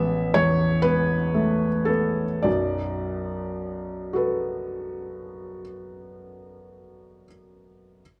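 A felt-muted upright piano plays alone in this brief fragment of a longer piece of neoclassical minimalist music, its mellow, intimate tone sitting up front and spanning the deep bass up to E5. The mood is melancholic and wistful, moving in a loose, rubato 6/8. The opening passage rests on an Asus2 chord and slows down through its first 2.5 seconds before the harmony settles onto Bm7 for a second phrase that runs to about 5.8 seconds. A moderate studio reverb adds a gentle sense of room around the soft, vintage-toned instrument. The production is dark overall, with a faint mains hum audible beneath the playing.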